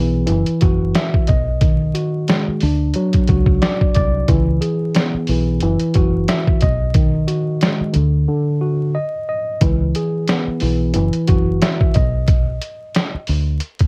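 Boom-bap hip-hop with a moody, dark atmosphere, moving at 90 BPM in 4/4 with a lightly swung sixteenth-note feel, cut from a longer piece. A worn tine electric piano sits up front, slightly out of tune and heard through a combo amp with a cassette-tape character and filtering, carrying chords such as Esus2/F#, B6, Dmaj7 and C#m7. Beneath it, a deep dub fingered electric bass gives a round, foam-muted low end. The sampler-style drum kit enters at 0.3 seconds, compressed and pitched down, with a thumpy kick, a medium-tuned snare and hi-hat, muffled yet pushed forward in the mix. Breaks open up around 8.3 seconds and again at 12.3 seconds, and the piano stops at 13.3 seconds as the passage closes. Light reverb, vinyl crackle and a home-cassette grain give the whole recording a dusty, lo-fi feel.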